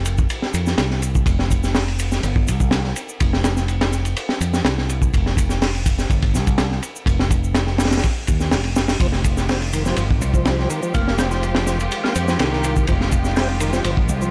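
Breakbeat with a funky, gritty mood, built on an up-front acoustic drum kit with a punchy kick, high-tuned snare and dark, rolled-off cymbals, a fingered electric bass given tube saturation, and an overdriven analog shaker tucked in the background over a single Fm9 chord. At 9.0 seconds a fat, percussive tonewheel organ riff enters with key click, chorus vibrato, a slow rotary speaker and tape echo, alongside a distant, lush string section holding bowed chords that pump against the sidechain. The small-room drums sound saturated and smooth, while the strings stay clear and focused, and the whole is cut from a longer piece.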